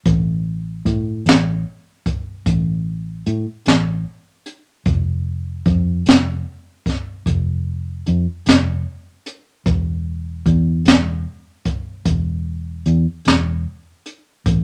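A brushed jazz drum kit, airy and polished with a high-tuned snare, punchy kick and hi-hat, sits up front beside a dark, round, foam-muted electric bass in this smoky, brooding slow blues excerpt in 12/8, both parts playing together throughout under light reverb.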